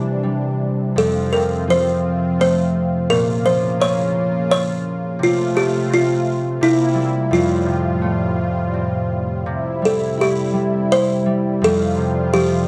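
This tender, sleepy lullaby in children's-music style sways in 3/4 at 84 BPM with a rubato feel, centered in F major and tuned slightly low to A4 = 439 Hz. A buzzing kalimba carries the melody up front, its thumbnail-plucked notes woody, short and airy with a bright rattle from the solid board. Beneath it, a concert harp plays fingerpicked accompaniment that rings with a mellow, acoustic glow, also placed close to the listener. Further back, a lush unison pad holds sustained chords with a soft attack and long release, its detuned sawtooth tone thick and nasal, thickened further by chorus. The harmony drifts from Cadd9 to F, darkens briefly on Bbm, and passes through C7 before settling on Fadd9, then a new passage from 9.5 seconds moves from C to a closing Fsus2. Light reverb surrounds this 12.7-second fragment, cut from a longer piece, with all three parts playing throughout.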